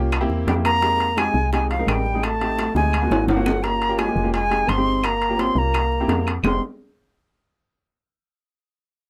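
Afro-Cuban jazz in F minor at 171 BPM, driving and sultry, with an up-front airy silver concert flute carrying the melody over a clear trombone second line, a warm baby grand piano accompanying, a round woody FM bass, and ringing metal-shell timbales, tight high-tuned bongos and dry claves, with a drum fill from 2.8 to 3.6 seconds before the harmony moves through half-diminished chords back toward F minor in light reverb.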